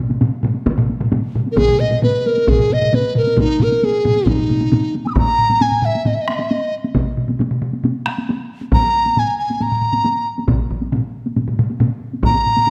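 Japanese traditional taiko ensemble music at 135 BPM in a straight 4/4, powerful and driving, with the tempo speeding up across this short piece cut from a longer work. Two solo taiko drum parts played with hard sticks open the recording: one sounds in a live room, the other is compressed and saturated. Two taiko ensemble parts struck with heavy sticks fill out the percussion, one close and dry and the other with live room ambience. A large bamboo dizi with a buzzing membrane enters at 1.5 seconds and sits up front, its tone pure and hollow with vibrato, a crisp attack and rolled-off highs, ranging from Eb4 to Fb6. The music shifts into a new section at 5.2 seconds, and a moderate scoring stage reverb lends the whole ensemble a sense of space.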